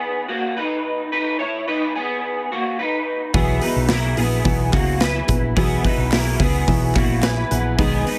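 Nostalgic and youthful, this excerpt of jangly indie pop in B major moves at 108 BPM in a straight 4/4, opening with a bright, twangy, slightly broken-up electric guitar playing arpeggios alone through a small old amp, colored by ensemble chorus and digital delay. At 3.3 s the band arrives: an up-front rock drum kit with a boomy kick, a round, punchy hollow-body bass, a full-bodied fingerpicked steel-string acoustic guitar, and soft electric-piano-like synth keys with chorus sitting in the background, while crisp group handclaps join at 3.9 s. The keys add a fill at 6.7 s over a single Badd9 chord, and the mix carries light reverb.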